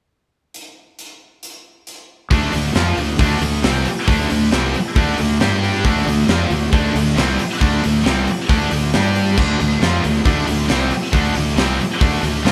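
Hard rock with a driving, heavy mood in straight 4/4, cut from a longer piece. A tight metal drum kit with a high-tuned snare opens alone at 0.5 seconds with crash, hi-hat, kick and snare, sitting up front in a big-room sound. At 2.3 seconds a growly, fuzz-overdriven fingered bass joins up front alongside three bright, high-gain distorted picked guitars playing riffs in the background, one of them double-tracked, moving between D minor and G5 chords in a moderate live-room ambience.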